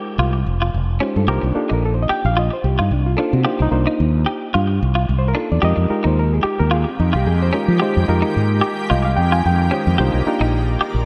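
Slick and intense, this 110 BPM jazz excerpt in F minor swings gently over Fm11 and Cm11 chords, with a round, punchy fretless bass up front, a reedy, worn, slightly out-of-tune electric piano comping, clean compressed guitar stabs carrying chorus and delay, and a shimmering, ethereal pad with octave-up sparkle entering at 6.6 seconds, all set in a plate reverb with bright 1980s-style digital production.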